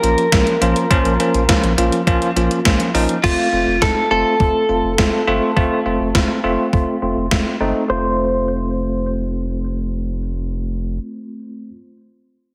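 A gated 80s digital drum machine stands out in this upbeat, nostalgic synth-pop excerpt, its thumpy kick, gated reverb snare, hi-hat and crash sounding sampler-style and tape-touched, up front yet re-recorded in a large room, before it drops out at 7.5 seconds. Moving at 103 BPM in a straight 4/4 in F major, the piece carries a clean, direct-recorded electric guitar melody, picked and compressed, softened by a low-pass filter and trailed by analog delay. A bell-like tine electric piano supplies bright, clean accompaniment, also low-pass filtered, while a round analog bass sits deep and dark beneath, with a nasal edge, fast attack and sustained notes, until it stops at 11.0 seconds. The harmony moves from Bbm to F at 3.2 seconds, where a filter sweep runs through the middle passage until 7.9 seconds. A moderate, lush hall reverb surrounds the mix, and heavy multiband compression gives it a loud, radio-ready sheen as this cut from a longer piece closes at 11.7 seconds.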